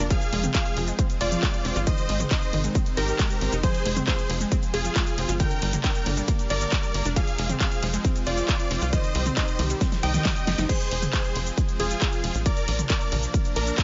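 A euphoric, bright supersaw lead carries the melody through this bittersweet, driving uplifting trance excerpt at 136 BPM in F dorian, riding over a tight sequencer bass, a punchy up-front electronic kick and a big-room kit with a huge snare, crash, claps, hi-hat, ride, shaker and toms, while a lush background pad holds sustained chords and two detuned unison plucks play arpeggios until 10.6 s and a second line, the pad, bass, lead and plucks pumping with sidechain and the lead and plucks echoing with delay in a dry mix, as a drum fill from 9.8 s leads into a band accent at 10.6 s.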